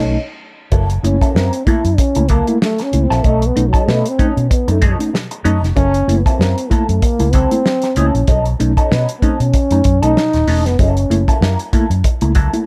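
A gritty, strutting funk groove at 95 BPM with a lightly swung 16th feel opens on a band accent before the dry soul drum kit, with its fat snare and tight kick, comes in up front at 0.7 seconds beneath a round, punchy, foam-muted vintage electric bass. A clean, picked electric guitar through wah with a warbly pitch drift and a reedy electric piano throbbing with fast tremolo fill out the alternating B9 and F#7#9 chords. Over this small-room backdrop, a close-miked trombone takes a dark, breathy jazz solo full of scooped notes and vibrato until 11.4 seconds, in what sounds like a cut from a longer piece.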